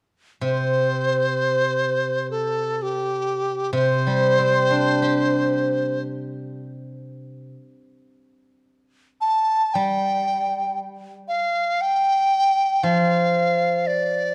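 A dark, warm recording set in a moderate recital-hall reverb carries this graceful, festive Chinese traditional chamber piece in free time and C zhi mode, cut from a longer piece, where a large bamboo dizi with a buzzing membrane sings the melody up front with pure, tongued, vibrato-laden tone and lifted highs while a steel-string zither, played with fingerpicks, accompanies in ringing, silvery lines just as close, both sounding from 0.4 to 14.3 seconds as the music moves into a new section at 9.8 seconds.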